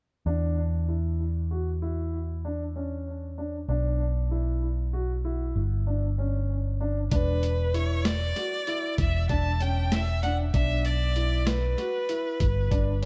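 A dark, mellow grand piano plays arpeggios with tape echo over a round, amped picked electric bass in this tense, intricate progressive instrumental excerpt in an uneven 11/8 meter, until at 7.1 s a rich, focused bowed violin carrying the melody with vibrato and a gritty, pitched-down boom bap sampler-style kit with a thumpy kick and high-tuned snare join, both soaked in tape echo in an otherwise dry, echo-heavy mix.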